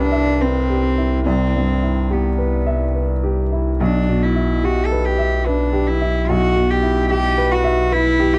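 This dry, close recording has the character of a 1970s studio session, with little reverb and every part placed up front. It is a short passage of neoclassical piano and strings, cut from a longer piece, moving in a rubato three-four with a hopeful, tender mood and tuned slightly low at A4 = 437 Hz. The upright piano carries the accompaniment, its clear, woody tone natural and intimate, with the sound of its action audible beneath the notes. Alongside it, a single bowed cello plays a second line sul tasto, its soft attack and pure, smooth top giving it a warm, floating quality. A deep, full sub bass with an octave, sine- and triangle-like and sustained after a fast attack, anchors the low end as the harmony moves from Cmaj7 to G6/B at 3.8 seconds.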